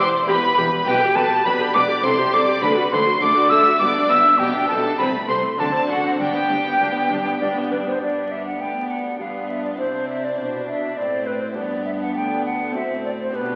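In a straight three-beat metre, this stormy, dramatic baroque-style concerto movement with solo episodes is cut from a longer piece. The hollow, pure-toned concert flute sits up front, carrying the melody with tongued notes and vibrato, while a clear, intense violin section also carries the melody and a second violin section bowed with vibrato shapes an inner line beneath it. A full-bodied viola section and a delicate, fingerpicked lute with double nylon strings fill in the accompaniment. In the background, a smooth, even cello section anchors the bass throughout, and a clear, intense double bass section joins it until 7.8 s. The whole performance sounds like a very old 78 rpm record, with vinyl crackle and the long, wet reverb of a concert hall.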